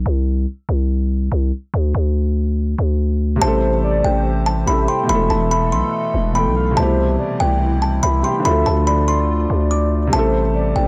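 This melancholic, brooding hip hop excerpt moves with a half-time feel and opens with a growling, buzzy 808-style bass playing alone as a break. At 3.4 seconds the kalimba takes the melody, its woody, fingertip-plucked tone sitting up front and ringing through a low-pass filter and analog delay. The same moment brings in a velvety synth lead carrying a second line with chorus, vibrato and delay, and a felt-muted upright piano whose intimate accompaniment carries audible action noise. A hollow, flute-like pad follows at 3.8 seconds, holding airy sustained chords with chorus in the background. Chords move from Am7 through Esus4, Cmaj7 and Dm back to Am7, and the sound is dry and gritty, with transformer saturation and small room ambience.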